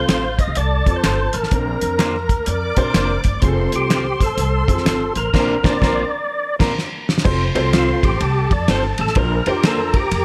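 A swung 126 BPM 4/4 groove in F major drives this uplifting, warm excerpt of uptempo 1960s-style soul, where a fat, percussive tonewheel organ with key click, chorus vibrato and fast rotary speaker carries the melody over veiled con sordino strings, a clear, boxy grand piano with audible action noise, a woody pizzicato upright bass, dark clean guitar stabs in the background, an up-front cloth-damped thuddy drum kit with fat snare and dark cymbals, and background finger snaps that stop at 5.0 s, before a band accent at 5.3 s and a drum fill lead into a very quiet, ringing vibraphone at 7.7 s.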